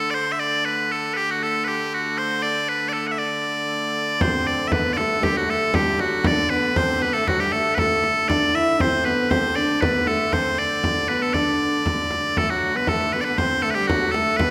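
In a straight 2/4 at 118 BPM, this festive, rustic medieval dance in D mixolydian, cut from a longer piece, sets bright, piercing bagpipes up front on the melody over a rich, smooth wheel-bowed hurdy-gurdy drone, and at 4.2 seconds a clear French horn with light vibrato and a soft attack adds a second line while a close, dry frame drum played with hard hands joins, the whole ensemble set in a wet recital hall reverb.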